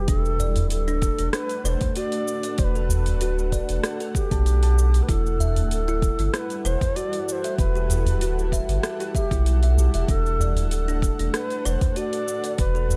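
Meditative and earthy, this organic downtempo piece, cut from a longer work, sets a mellow, airy wooden flute melody with vibrato and digital delay over a blurred, detuned granular pad that pumps with the sidechain, while a woody, ringing kalimba traces arpeggios through tape echo. Underneath, a round sub bass sits up front and pumps in step with the pad, joined at 0.1 seconds by an overdriven electronic kick and a produced drum kit of cabasa, metallic hats and rim click, with a small, close udu tucked into the background from 0.4 seconds. The harmony moves from Bm7 to Emadd9 and back, all held in a studio reverb.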